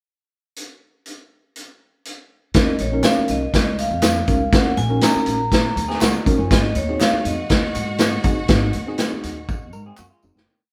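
A live band in a moderately reverberant stone room gives this short, complete piece of uptempo 1960s-style soul a driving, passionate energy at 121 BPM in Eb dorian, tuned slightly low. The vintage drum kit sits up front, gritty and saturated with a rolled-off top, opening alone with a pickup bar before pounding out a soul beat with the snare on all four beats. At 2.5 seconds the band settles on Ebm7: a woody, thumpy upright bass plays a syncopated, melodic line with muted ghost notes and slides, a worn, slightly out-of-tune tine electric piano pushes close-voiced chords, and tambourine, maracas and group handclaps mark the backbeat from the background. A vibraphone struck with hard mallets carries the melody in ringing, metallic call phrases with a medium motor vibrato. An electric guitar through a small old amp adds slightly broken-up, lo-fi fills in sixths between phrases, while a lush, distant violin section enters at 6.5 seconds with fast runs into held, expressive notes. 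The piece fades out from 8.5 seconds as a drum fill closes it.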